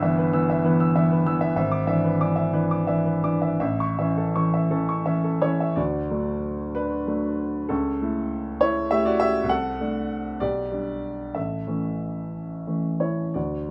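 Warm and lyrical, this romantic character piece for solo piano unfolds in 6/8 at roughly 53-68 BPM, counted in dotted quarters, with a flexible rubato that lets phrases breathe. A baby grand carries everything alone from 0.0 to 13.7 s, its open tone and long sustain sitting up front in a light reverb. The writing spans the keyboard from G1 up to E6. The first section moves from Em/G through E7/G# to A, and at 5.8 s a second section opens on D, passing through A/C#, D7/C and G/B before settling on A. Tuned to A4 = 441 Hz, the passage is cut from a longer piece and feels like a tender, unhurried reflection.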